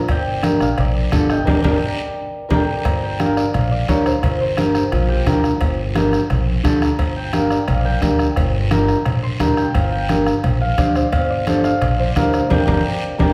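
A driving, fiery cumbia groove in straight 4/4 at 174 BPM rests on a soft-beaten bombo, low-tuned, thick-skinned congas, ringing cowbell and timbales in the background and a raspy guiro, with a woody pizzicato upright bass anchoring the G minor harmony. A dark, clean electric guitar sits up front in accompaniment from 0.4 seconds, while a mellow, thumb-plucked concert harp carries the melody and takes a solo from 2.8 seconds, framed by band accents and a brief drum fill at 13.0 seconds. The band sounds set back in a large studio with a lush reverb, in a fragment cut from a longer piece.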